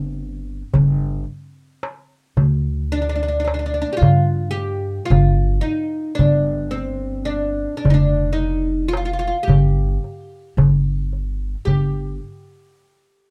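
A rough home demo in a small, reverberant room frames this melancholic, soulful Arabic maqam ensemble excerpt in G hijaz, moving at 110 BPM in eighths through a straight 10/8, where a bright, woody, fretless oud with double strings carries the plectrum-plucked melody up front in plate reverb, a dark, thumpy pizzicato upright bass on gut strings holds the low end, and a crisp, high, small metal-shell darbuka enters close at 0.7 seconds.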